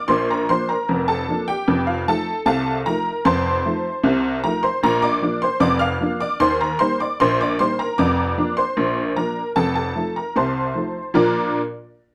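A jangly, detuned honky-tonk upright piano plays solo through this lively, playful ragtime excerpt in Bb major at 76 BPM in a straight 2/4, sitting bright and up front in a wet studio reverb as it moves through Bb, F7, Eb and back to Bb before stopping at 11.6 seconds.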